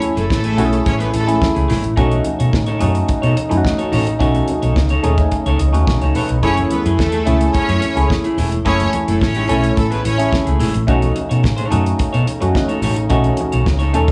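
Set in a small, snug room, this sultry, danceable disco excerpt rides on a dry, up-front 70s drum kit with a fat snare and tight kick, a dark, round hollow-body bass, and a stringy, phased clav that adds a fill at 5.3 seconds, while a twangy, clean picked guitar, very quiet low-tuned congas and a mellow, distant French horn section holding soft chords fill out the groove, and a bright, lush bowed string section with vibrato appears briefly near the start and again from 6.4 to 10.3 seconds.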